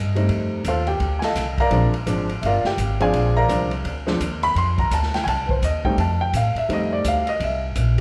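A clear, up-front concert grand piano with deep bass accompanies this sophisticated, warm small-group swing and bop jazz excerpt over F7, Bb7 and C7 changes, joined by a woody pizzicato upright bass and, from 0.2 s, a smooth acoustic drum kit with dark cymbals, a boomy kick, a medium-tuned snare, hi-hat and ride cymbal, with the trio heard from further back in a large studio's moderate reverb.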